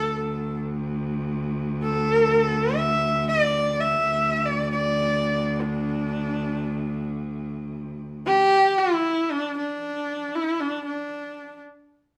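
Mongolian folk in free time, proud and vast in mood, with a bright, husky horsehead fiddle singing the melody up front with vibrato and portamento over a single bowed cello holding a low, boxy drone. The cello drops away at 8.3 seconds, leaving the fiddle alone until 11.6 seconds in this passage cut from a longer piece. The two players sound live together in one studio room, wrapped in a wet reverb.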